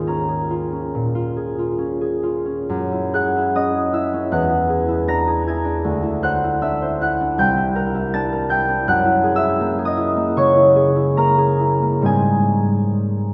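Bathed in the long, wet reverb of a cathedral-like space, a solo concert harp sits up front with a warm, ringing, thumb-plucked tone across a range from C2 to Bb6. This graceful, peaceful classical excerpt moves at around 77 BPM in 4/4, with uneven, rubato timing that lets each phrase breathe. Rich extended harmonies drift from Eb9sus4 through Gb9, E9, D9 and C9, return to Gb9, and then settle on Abmaj7 at 12.1 seconds.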